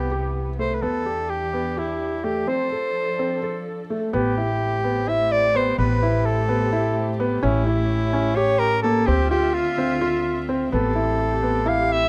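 A mellow soprano saxophone carries the classical-style solo melody up front, its smooth top gliding over a contemporary chamber piece in 7/8 at 255 BPM (eighths), hopeful and shimmering in mood. Beneath it, a dark chamber string section holds soft-attack, sul tasto chords with light vibrato, while a felt-muted upright piano adds intimate, thin-felted arpeggios and a woody, growly pizzicato upright bass on steel strings sits up front in the mix. Cut from a longer piece, the passage moves from Cmaj7 through Em7 and F6 into an Am9 section at 4.1 seconds, turning through A7 and Dm9, all captured with close, detailed microphones and light reverb.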